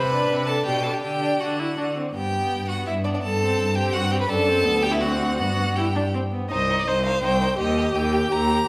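Graceful and lively, this quick classical-period string quartet passage in three-four moves with a supple rubato feel: an up-front, focused first violin sings the melody with vibrato over a smooth, more distant second violin line; a rich, close viola accompaniment uses soft attacks and expressive portamento; and a clear, even cello anchors the bass, all bowed and set in the lush reverb of a recital hall before the harmony darkens toward C minor at 6.5 seconds.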